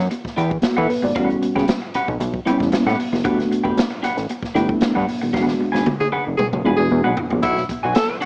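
Heard through a cassette-tape, small-speaker sound with light reverb, this sly, funky 115 BPM cut from a longer piece sets a clean, twangy electric guitar with lush chorus over a fat analog bass, a swinging big-band drum kit carrying vintage 12-bit sampler grit and a drum fill with a band accent from 5.3 to 7.4 seconds, very quiet high-tuned congas, and reedy electric piano stabs with fast tremolo, while a clear tenor saxophone adds a second line from 6.0 seconds over chords moving from Em9 through A13, Gmaj7 and E9 to Bm9.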